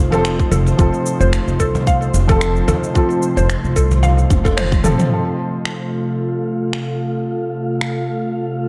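Organic downtempo with an earthy, mystical mood at 111 BPM in F major, swung on the sixteenths, where a soft, muted felt upright piano and an airy, breathy pad with chorus pulse under sidechain pumping beside a thumpy, woody pizzicato upright bass up front, a faint wind-like tuned noise texture in the background, a round, mellow mallet-like synth pluck arpeggiating through lush chorus and delay, a tape-warm organic electronic kit of cabasa, finger snaps and toms, a distant, very quiet cajon and a tight electronic kick, all in a moderate concert-hall reverb, with a drum fill from 4.3 s leading to a filter sweep on an analog synth pad from 5.1 s once the bass has dropped out.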